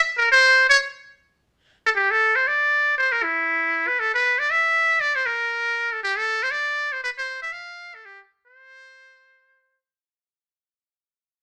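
A metal-muted trumpet, buzzy and thin with a smooth top, light vibrato and scooped notes, plays a swinging, sophisticated jazz solo up front in free time in C major between E4 and F5, set in a moderate studio reverb, in this piece cut from a longer work that begins fading out at 1.9 seconds.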